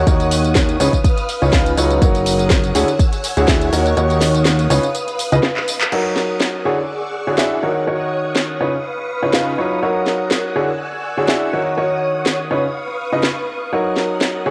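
Piano house at 123 BPM in F# major, joyful and feel-good, with a lightly swung 16th groove and a bright, woody upright piano riff, tape-echoed and pumping, out front over shimmering string-machine violin chords cycling through D#m7, C#9, F#6 and Dmaj9#11. A fat, detuned sawtooth bass and a punchy layered kick drive the opening, then the kick drops out at 4.0 s and the bass falls away at 5.4 s. A drum fill from 5.6 s and a band accent at 5.8 s lead into the second section, where the house kit of cracking snare, metallic hats, handclaps, tambourine and crash carries on. The sound has a vintage home-cassette character with light reverb, and the piece is cut from a longer work.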